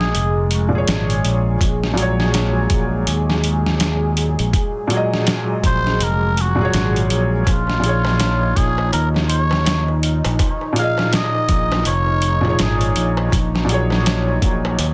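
Trip hop in Bb minor at 82 BPM with a swung 16th feel, brooding and melancholic, built on a gritty, overdriven sampler-style drum kit with a thumpy kick, punchy tube-saturated fingered electric bass, a soft felt-muted upright piano carrying tremolo, 12-bit grit and tape echo, and a deep, detuned analog pad with chorus holding sustained chords. A cup-muted trumpet with dub echo plays a veiled, raspy, growling jazz-style solo line with scooped notes and light vibrato, returning at 5.7 seconds, while a crisp metal-shell darbuka enters quietly in the background at 7.5 seconds. The chords shift between Bbm7 and Gbadd9/Bb in a dry, dense, heavily limited mix taken from a longer piece.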